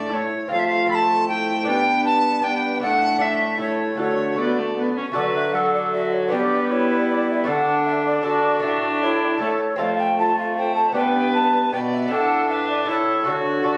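Classical renaissance-style consort dance in a stately, festive triple metre, where a bright, chiffy tenor recorder carries the melody over a mellow, hollow second recorder, a delicate fingerpicked lute with double gut strings, a reedy, gut-strung viola up front and a distant, roomy bassoon on the bass, all heard through a stone room's moderate reverb and a phone's ears throughout this 13.8-second cut from a longer piece.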